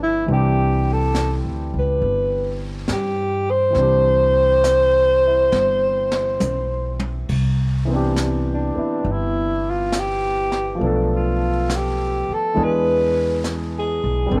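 A breathy alto saxophone with subtone and vibrato carries the melody of this intimate, tender jazz ballad at 68 BPM in C major, with a lilting swing, moving into a solo at 7.3 seconds. A natural-sounding grand piano accompanies, and a woody, thumpy pizzicato upright bass sits up front. A brushed drum kit with dark cymbals and a boomy kick enters at 0.3 seconds and plays a fill from 5.5 seconds, all in light reverb over chords moving from Cmaj9 to Bm7b5 and E7 in this short cut from a longer piece.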